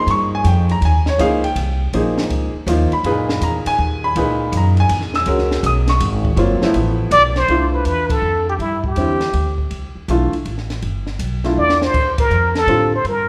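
A clear, natural-sounding modal jazz excerpt in a moderate recital-hall reverb, swinging in 3/4 with a spiritual, hypnotic mood, as an up-front concert grand with deep bass and short sustain lays suspended and extended chords over a woody, growly pizzicato upright bass and a dark, smooth cocktail drum kit with a high-tuned snare and punchy kick. At 7.1 s a plunger-muted trumpet enters up front with a wah-wah tone and light vibrato, stating a jazz-style solo line as the harmony settles into a major-ninth colour. Band accents land at 8.0 and 12.1 seconds, and a short drum fill arrives just as the trumpet returns, before the piece is cut off.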